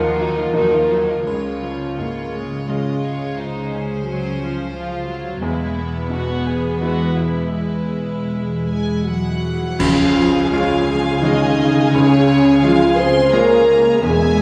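Uplifting and hopeful, this cinematic, emotional film score for orchestra moves in a rubato three-time, cut from a longer piece. A rich, floating violin section carries the melody with a soft, sul tasto attack, while a second, smoother violin section sings a supporting line and a silver concert flute adds a pure, straight-toned note that is gone within the first second. Beneath them, a bright baby grand piano provides open, brilliant accompaniment alongside a background viola section, and an intimate cello section and woody double bass section, both dark and bowed, anchor the bass. A mellow French horn section sounds sustained chords at the opening and returns at 8.7 seconds, and a background percussion group of triangle, cymbal swell, clash cymbals and concert bass drum with bright cymbals enters at 1.3 seconds and stops at 11.2 seconds. A band accent marks the arrival of the final passage at 9.8 seconds, and the whole ensemble sits in a lush scoring-stage reverb.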